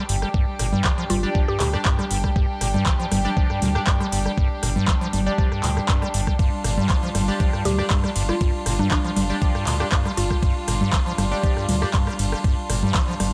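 A squelchy, resonant square-wave acid bass drives this gritty, trippy acid house excerpt at 119 BPM, its riff coloured by lush chorus, analog delay and sidechain pumping over a G5 chord. Beneath it sit a deep, round analog bass and a thumpy, sampler-style kick up front, while an electro drum machine adds congas, handclaps, metallic hats, ride cymbal and rim clicks. A rich chamber string section holds bowed chords with light vibrato, a nasal band-passed chord stab enters at 1.2 seconds, and a woody, warbling FM mallet pluck carries the melody briefly from 1.1 seconds and again from 7.7 to 10.7 seconds, all in a dry hardware sound with digital ambience.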